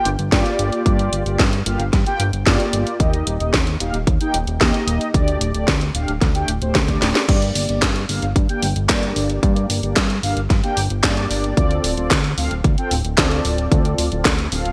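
A straight 4/4 pulse comes from a punchy electronic kick and a house drum kit, whose cracking, up-front snare, handclaps, hi-hat and crash cymbal carry gated reverb, and a drum fill at 7.0 seconds leads into the second section at 7.3 seconds of this bittersweet, melodramatic italo disco excerpt. Underneath, a fat, saturated, wave-folded analog bass with a filter pluck holds the low end, while mellow, detuned synth brass with chorus and delay plays round, brassy stabs with an evolving filter sweep over chords moving from Gm7 through Eb and Dsus4 to Gm and Dm7. The whole track sits in a light digital ambience.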